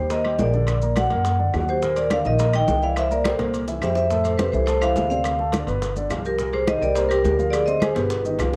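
Afro-Cuban jazz in C minor at a driving, fiery 210 BPM, this brief cut from a longer piece sets a ringing, metallic vibraphone melody over a woody padauk marimba second line and a concert grand piano with deep bass, all three carrying cassette tape grit and plate reverb, while a dark, up-front pizzicato upright bass anchors chords moving from Cm9 through Ebmaj7, Fmaj7 and G7 to Dm7b5, and background congas, tight high-tuned bongos, grainy maracas, dry claves and distant ringing timbales churn beneath, with drum fills at 3.2 and 8.0 seconds.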